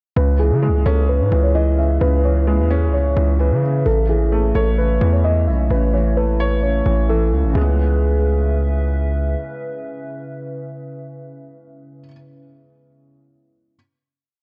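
A half-time trap groove drives this dark, hard-hitting hip hop piece, where a punchy, heavy 808-style bass with long sub-bass notes and pitch slides sits up front beneath a looping melody on muted, felt-like synth keys colored by phaser and tape echo, a soft upright piano repeating an eighth-note arpeggio with audible action noise, and a warbling, nostalgic tape-like pad that enters at 0.8 s and sustains into the final chord from 7.5 s.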